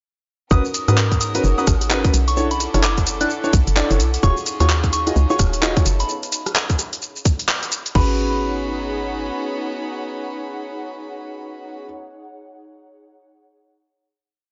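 Late-night and skippy, this short two-step garage piece sets a hollow, knocking FM bass and a tight electronic kick under a crisp garage kit of swung hats, rims, claps, shaker and crash, while a dark baby grand piano stabs a close-voiced chord riff, a soft synth bell repeats a chorused, tape-echoed melody, and a bright chamber violin section and an airy, breathy pad pump beneath. The drums drop out at 8.0 seconds, leaving a final chord to ring in a gritty, dry hardware sound.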